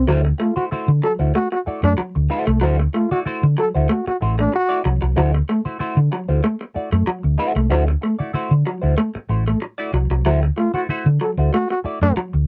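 A straight 4/4 funk groove at 94 BPM struts playfully over a D9 chord in D mixolydian, with a round, punchy hollow-body short-scale fingered bass up front, a slightly broken-up picked riff from an electric guitar through a small old amp with tremolo, a clean semi-hollow guitar accompanying through wah and lush chorus, and a breathy jazz-style trombone with scooped notes carrying a second line from 0.4 to 4.8 seconds and returning at 10.6 seconds, captured dry on a home cassette recording cut from a longer piece.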